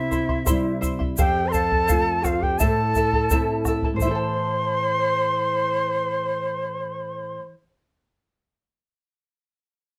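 A bright, airy large quena carries the melody up front, its wooden end-blown tone lifted in the highs and shaded with vibrato and a soft attack. This short cut from a longer Andean folk piece in A minor moves at 85 BPM in a straight 2/4, with a mood that is both melancholic and festive over chords moving from C to F to Am. Beneath it, a second large quena plays a breathy, close-miked second line that sounds slightly unsteady, with its own vibrato and a slapback echo trailing each phrase. The charango adds a mellow, shimmering fingerpicked accompaniment on its double strings, some doubled at the octave, while an up-front classical nylon-string guitar plucked with the thumb gives a warm lower foundation. A round bombo in a small room and a grainy, close and dry egg shaker drive the rhythm until 4.3 s, when they stop and leave the winds and strings to finish the passage under light reverb and detailed, intimate microphones.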